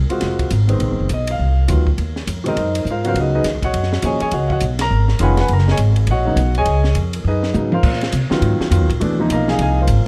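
Modal jazz in an intense, searching mood, this brief excerpt from a longer piece swings at a brisk clip, with a woody, thumpy pizzicato upright bass up front alongside a natural-sounding grand piano comping over suspended chords. A compact cocktail drum kit with a high-tuned snare, punchy kick and rolled-off, dark top sits further back, playing a fill at 7.5 seconds before the harmony returns to its opening chord. The dry, close miking gives every part a detailed, intimate presence.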